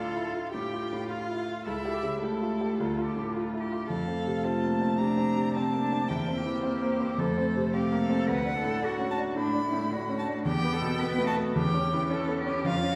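A brilliant, up-front grand piano drives this lively, spirited classical-period piano quartet movement in D minor at 109 BPM, its accompaniment reaching low into the bass while a rich violin carries the melody with expressive vibrato and portamento. Beneath them, a focused, distant viola fills in the accompaniment and a smooth, even cello traces a second line, all four parts playing throughout with a rubato feel as the harmony moves from D minor through F major and D major, reaching a C#dim/E chord at 11.6 seconds. The ensemble sits further back in a wet scoring-stage reverb, and the excerpt is cut from a longer piece.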